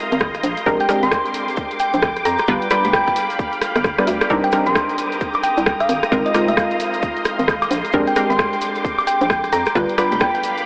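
Silky string-machine chords with ensemble chorus and sidechain pumping open this bouncy, late-night two-step garage excerpt alongside bright, detuned chord stabs that carry chorus, tape echo and a filter sweep throughout, soon joined by a hollow, knocking FM bass with tube saturation and a tight, layered electronic kick. An analog drum machine adds swung hi-hat, rim click and woodblock with a fill from 3.6 to 4.3 seconds, grainy maracas sit in the background, and from 0.8 seconds a round, tine-like thumb-piano pluck with a warbling, vintage tone carries the melody over chords moving from Bb13 and G7 through Cm9 and Ab69. The whole mix is dreamy and soaked in a huge ambient reverb, with an AM radio sound.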